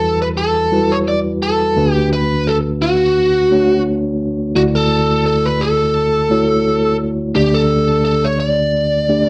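From the first second, a biting, overdriven electric lead guitar, picked and treated with slapback echo, carries a nostalgic, dramatic melody over a mellow, clean tine electric piano heard through its built-in speakers, both up front in this 9.3-second pop passage cut from a longer piece in B minor at 86 BPM with a lightly swung 16th-note feel, moving through Emadd9, Bm7/D, Dadd9 and Gsus2/D in a dry, close 1970s-style studio sound touched with light reverb.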